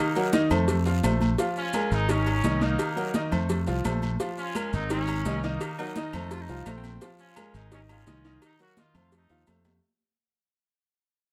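A straight salsa groove in 4/4 propels this fiery, passionate excerpt from a longer piece, built on a dense bed of background percussion: high-tuned, thick-skinned congas, a low, round, saturated cowbell, ringing agogo bells and timbales, grainy maracas and a raspy guiro. Faint, woody claves join from a distant, roomy space at 4.6 seconds. Up front, a punchy fingered electric bass anchors the low end while a brilliant grand piano carries the accompaniment over a cycling chord progression. A tight, vintage-toned trumpet section with vibrato leads the melody, and a breathy, gritty baritone saxophone slips in briefly as a second line at 5.8 seconds. The passage fades out throughout and closes with a drum fill at 9.3 seconds.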